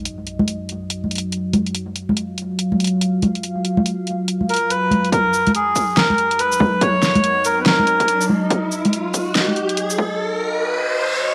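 The reedy, breathy melodica stands out most, stepping up front at 4.5 s with a short line between Ab4 and Db5, colored by cassette tape and dub echo before it drops out at 8.3 s. This is a meditative, brooding deep dubstep excerpt in Eb minor at 142 BPM, felt in half-time with a swung sixteenth-note lilt. Beneath it a dark, warbling pad of detuned sawtooth and sine voices with a sub octave holds sustained chords, softened by chorus, built-in reverb and tape, while a filter sweep moves across it. An overdriven deep house kit with hi-hat, shaker and a fat snare sits up front from the start, joined by damped, high-tuned congas played with soft hands and thrown into dub echo. A punchy, overdriven electronic kick arrives at 5.1 s as a build-up begins, and a riser and noise sweep carry the passage to its close, giving the home-cassette recording a hazy, lo-fi grain in a moderate room.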